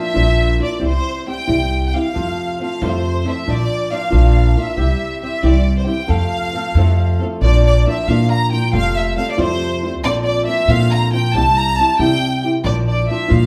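A clear, smooth violin section sings the melody with vibrato over dark fingerpicked flamenco guitar from the very start, joined at 0.2 seconds by a woody, thumpy pizzicato upright bass, in a romantic and festive mariachi excerpt of Mexican folk in 6/8 at 92 BPM, played live in one room with a wet large-studio reverb as the chords move through Bb, C and F before adding Fadd9 and Bbadd9 in the second section, which begins at 7.4 seconds.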